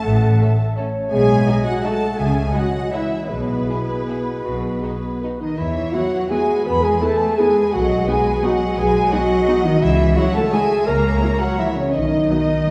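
Heard from far back in a concert hall, this orchestral passage is bathed in a long, wet reverberation. It is a sweeping, festive classical piece in triple metre with a rubato feel. A rich, focused violin section carries the melody with vibrato, and a second, smooth and even violin section joins at 0.4 s on its own line. A mellow, hollow flute group sits airy and crisp in the background, and a distant, roomy clarinet adds another line. A viola section with a smooth top fills in the accompaniment, while a present French horn section, the most prominent part, holds sustained chords with light vibrato. Underneath, a cello section and a close, expressive double bass section share the bass, the basses stopping at 12.2 s, just before this fragment of a longer piece cuts off.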